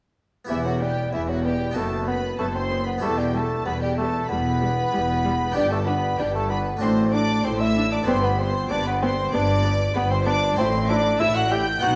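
A harpsichord with a bright, single-stringed Flemish voice sounds first at 0.4 seconds, sitting in the background as it sets out the harmony of this stormy, driving baroque-style concerto movement in 4/4. A moment later the full ensemble joins. An up-front solo bassoon carries the melody with light vibrato and a roomy, distant colour. Two violin sections share the upper lines. The higher one is lush and soft-attacked with portamento, while the lower second line sounds closer. A smooth-topped viola section fills in the background, and the bass is held by a lush cello section and a soft-attacked double bass section, all bowed with expressive vibrato. The harmony moves from E minor through G major and closes on A minor, all bathed in the wet reverb of a recital hall in this passage cut from a longer piece.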